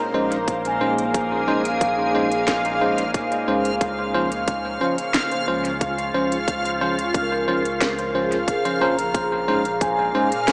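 Heard through a small speaker in a lush hall, this meditative, deep ambient dub excerpt at 90 BPM in Bb minor rests on a single Bbm11 chord, where a calm, detuned organ-like pad with chorus sustains beneath mellow, close-miked vibraphone arpeggios and bell-like electric piano stabs, both carrying dub echo, while a reversed, granular swelling texture holds F5, a round sine sub bass sits low, and an overdriven electronic kit with woody snare and crisp hats enters at 0.3 seconds, joined by a tight kick at 0.5 seconds.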